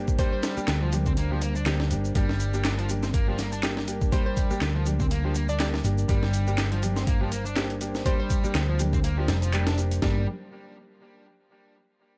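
Funky and gritty, this breakbeat cut from a longer piece rides a swung 122 BPM groove in G minor, holding a single G minor chord through a drop. A compressed, pitched-up sampler breakbeat kit with a thumpy kick and high-tuned snare sits up front beside a round, amped hollow-body bass. Electronic shaker and handclaps, a double-tracked fuzz guitar riff with delay, and brilliant baby grand piano stabs carrying vintage 12-bit sampler texture and delay fill out the dry mix. Deep in the background, a detuned, wave-folded analog pad pumps under sidechain with chorus, and a hollow, bouncy square pluck melody with an old record sound flickers at 0.2 seconds before returning from 4.1 to 8.3 seconds.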